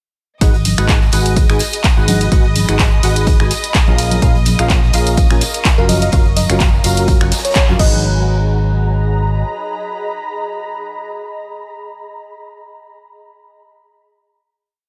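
Piano house with a soulful, energetic, swung feel, built on a four-on-the-floor electronic kick, punchy analog drum-machine claps, snaps, hats, ride and crash, soft tambourine and congas, a very quiet gritty looped breakbeat, a growly up-front fingered electric bass, hollow pumping organ stabs in a dotted rhythm, distant bowed symphonic strings holding a high note, an ethereal airy pad that lingers with the organ through the final chord after 8.0 seconds, and short sparkling bell-like electric piano phrases from 5.8 seconds, over a light reverb.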